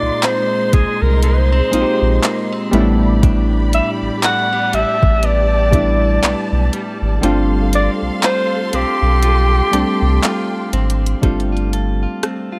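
A breathy alto saxophone leads this short, smooth and romantic contemporary R&B excerpt, its whispered subtone, vibrato and scooped notes sitting intimately up front with a touch of delay, carrying the melody until about 10.7 seconds. Underneath, analog keys built from pulse and sawtooth tones add round, decaying chords with chorus and a filter sweep, while a clean, direct-recorded electric guitar picks compressed arpeggios through a delay. A distant studio string section holds bowed, expressive chords with portamento and sidechain pumping, and a deep sine sub bass sits firmly in the foreground. The soft electronic drum kit, tape-warm and close, brings kick, hi-hat, rim click and handclaps at a slow 60 BPM in 4/4 with a gentle sixteenth-note swing, though the kick drops out from 7.2 to 11.2 seconds. The harmony drifts through suspended ninth chords in G mixolydian, settling on G9sus4 at 7.2 seconds, all in a dry, intimate space.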